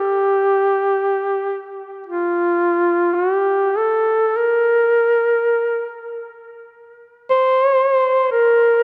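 A mellow duduk plays alone and up front through this brief 8.8-second excerpt of a mournful Caucasian folk lament, its vibrato-laden, smooth-topped folk line carrying a sense of longing between F4 and C5, touched with tape echo and captured by close, detailed microphones in a dry room.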